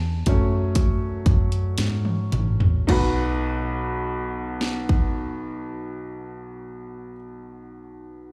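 A slow, straight 4/4 pulse sits between 52 and 63 BPM, easing into a slowdown over the opening seconds of this pop ballad fragment in B mixolydian, cut from a longer piece. The mood is hopeful and tender, with a baby grand piano carrying a featured solo at the start, its open, long-sustaining tone placed up front and touched by a slapback echo. Beneath it, a vintage muted fingered electric bass gives a dark, round, foam-muted, amped sound with a punchy edge. An electronic, layered house drum kit sits forward with a punchy kick, cracking snare, hi-hat, crash and toms, its sound tape-warm and re-recorded in a small room. A drum fill runs from 1.8 to 2.9 seconds, where the harmony moves from F#m to B and a new section begins, and the drums stop at 5.2 seconds. The whole piece is heard as a live gig through the venue's PA, wrapped in club reverb.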